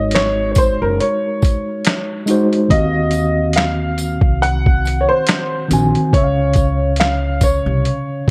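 Lo-fi hip hop in Eb dorian at a slow 70 BPM with a swung 16th feel, hazy and melancholic, moving through Ab7sus4, Ebm69 and Db in this short cut from a longer piece. A slightly detuned, woody upright piano with long sustain carries the melody through analog delay, up front beside a mellow tine electric piano with cassette-tape color, while a pizzicato upright bass with steel strings adds a thumpy acoustic low end until 7.8 s. A gritty, compressed, pitched-down boom bap drum kit of kick, medium-tuned snare, hi-hat and finger snaps sits loudest in the mix from 0.1 s, with a jingly, close and dry tambourine tucked in the background, all under light reverb.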